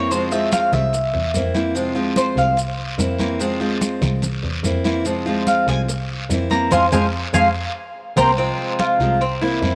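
A picked Cuban tres leads up front with metallic, octave-doubled double strings, taking a solo that sits out between 2.6 and 5.5 seconds before returning, in this sultry Cuban son and guajira cut from a longer piece at 145 BPM in F harmonic minor. A woody steel-string acoustic guitar with old strings picks through Fm and C7 changes beside it, while a dark, veiled double bass, bowed and muted with vibrato, holds the low end. Damped congas sit in the background with raspy guiro and grainy maracas, the band hitting an accent from 6.7 seconds that is capped by a drum fill near 7.8 seconds, all set in a moderate plate reverb.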